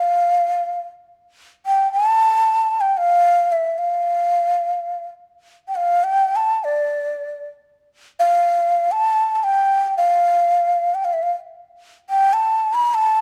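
A solo ney carries this hypnotic, longing fragment of a Persian modal ensemble piece, its breathy, mellow tone placed up front for the whole 13.2 seconds. The end-blown reed cane speaks with expressive vibrato and tongued note attacks, moving between D5 and a sharpened B-flat a fifth above. The playing unfolds in free time, with an unmetered feel. The phrase is stated once and then taken up again from 7.7 seconds, which deepens the trance-like quality. Close, detailed microphones capture the grain of the breath within a light reverb, and the tuning sits at A4 = 439 Hz.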